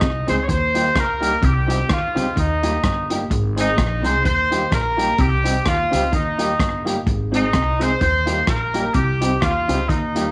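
A bright, tight horn section with slapback echo carries the melody up front in this upbeat, bouncy, lightly swung ska excerpt, over a woody pizzicato upright bass with tube saturation, a gritty breakbeat kit of hi-hat, punchy kick and rim click, a slightly broken-up electric guitar riff in the background, and, from 0.3 s, a clean, dark electric guitar with tremolo and natural, long-sustained upright piano stabs, set in a small room with spring reverb.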